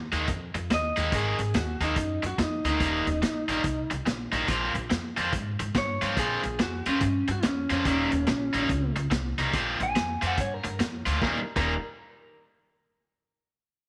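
A small room with light reverb gives this excerpt of an electric blues shuffle a close, lo-fi sound, with a muffled, gritty vintage drum kit of dark cymbals and a tight kick, and a woody pizzicato upright bass holding the bottom. At 143 BPM in a swung 4/4 in Eb mixolydian, a bright, overdriven stack guitar drives the riff up front, and from 0.7 seconds a slightly broken-up, compressed guitar through a small old amp carries the melody. The mood is soulful and rollicking as the changes move from Absus2 through Eb, Bbsus2, Eb7 and Bb7sus2 before landing on Eb at 11.2 seconds.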